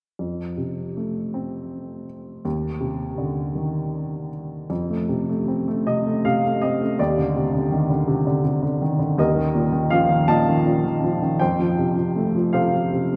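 Unfolding in a rubato 6/8, this peaceful, lyrical classical fragment cut from a longer piece features a lone upright piano, woody and intimate with audible action noise and a short sustain, sitting up front inside a lingering cathedral reverb as its warm harmonies move from F through Cmadd9/Eb and Ebsus2 before settling on Fadd9 at 11.4 seconds.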